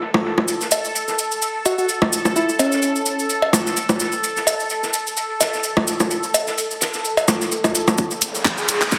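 Minimal techno with a sparse, cool mood and a slight swing, cut from a longer piece. A soft-mallet drum kit with a fat snare sits in the background beneath a bubbling, resonant sawtooth texture of random filter steps that pumps against the beat, while overdriven bongos and cowbell with dub echo and a grainy, mellow cabasa sit up front, and a round, gentle FM synth lead with chorus and vibrato appears briefly from 1.7 to 3.3 seconds. At 8.0 seconds a build-up begins as a punchy, tape-flavoured electronic kick drum enters, joined by a riser and a house kit of handclaps and hi-hat, all under plate reverb and a heavily compressed, radio-like sound.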